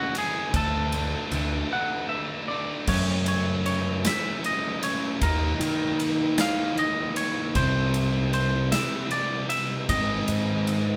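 Angsty and brooding, this quiet-loud alternative rock piece moves at a slow 51 BPM in 6/8, cut from a longer recording of a band playing live in one room with moderate studio reverb. A clean, twangy electric guitar carries the melody over a bright, double-tracked distorted guitar riff and a growly, fuzz-laden picked bass that enters at 0.5 seconds, while a huge arena drum kit with punchy kick, medium-tuned snare and bright crash and ride cymbals pumps through a hall-like room. After an opening on F#m and D, the music shifts at 2.9 seconds into a second section moving through F#m, D#m, C and G#.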